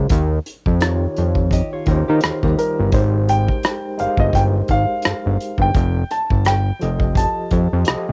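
A fat, saturated analog bass sits up front with a detuned sawtooth-and-square growl, giving this introspective, smooth neo-soul R&B excerpt at 85 BPM its thick foundation, while a punchy acoustic drum kit played with bundle sticks taps out hi-hat, kick and rim click under a 16th-note swing. A barky, overdriven tine electric piano with fast tremolo and cassette-tape grit comps through Eb7, Abmaj7 and F7, and a dark, clean hollow-body jazz guitar appears briefly in the background from 1.5 to 2.9 seconds. From 2.6 seconds a natural-sounding baby grand piano carries the melody in plate reverb, all captured as a dry home cassette recording with faint mains hum.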